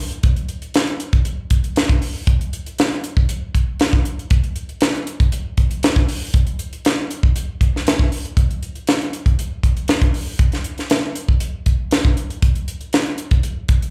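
Soulful and brooding, this blues fragment cut from a longer piece features a tight, dry acoustic funk kit, with hi-hat, tight kick and high-tuned snare sitting up front through a slapback echo, heard over the venue's PA in a moderate club reverb from 0.1 to 13.9 seconds.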